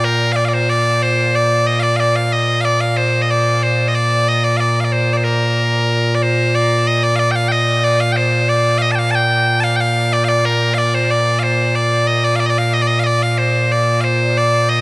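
Heard from further back in a room with a moderate, huge ambient reverb, this short cut from a longer piece of Scottish pipe music in Bb major sets a solo of loud, bright, piercing bagpipes up front, sounding continuously from 0.0 to 14.8 seconds at 92 BPM in a straight 2/4 as the same opening section plays twice, stirring and proud.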